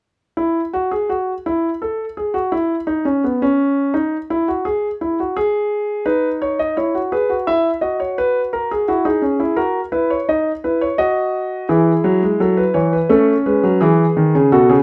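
A warm, intimate concert grand piano, up front with deep bass and audible action noise, plays alone from 0.4 to 14.8 seconds in this lively, elegant excerpt from a baroque-style three-part fugue in straight 4/4. An unharmonized opening gives way to chords around 6.1 seconds, all set in light reverb.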